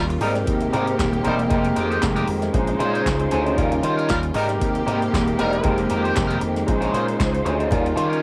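Growly slap bass through an envelope filter drives this short disco excerpt at 116 BPM in Bb dorian, cycling through Abmaj9, Fm11, Bbm11 and Eb9 with a danceable, driving feel over an electro analog drum machine of deep kick, punchy snare, handclaps and metallic hats. A barky, overdriven tine electric piano with subtle chorus, a twangy, slightly broken-up guitar with wah and lush bowed strings fill out the harmony, while clear vintage horn stabs with analog delay drop out at 5.7 seconds. Very quiet, hard-hit congas appear only at 7.7 seconds, and the whole carries light reverb and the warm character of a home cassette recording.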